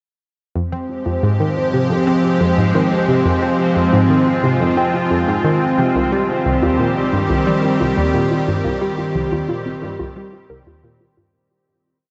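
Drenched in a huge ambient reverb with a dark, soft-topped sound, this short, complete piece of cosmic, hypnotic, sequencer-driven space music moves at 89 BPM in F minor, shifting from Fmadd9 to Cm at 6.0 seconds. An up-front, round analog pluck repeats an 8-step riff through chorus and delay, a very quiet, warbling lo-fi pluck loops a 10-step arpeggio that drifts against the bar, and a bubbling, resonant texture sits in the background with its random filter steps on a held high note. From 1.0 seconds an evolving wavetable pad morphs through sustained chords with slow attack and ensemble chorus, before the whole piece fades out from 7.7 seconds.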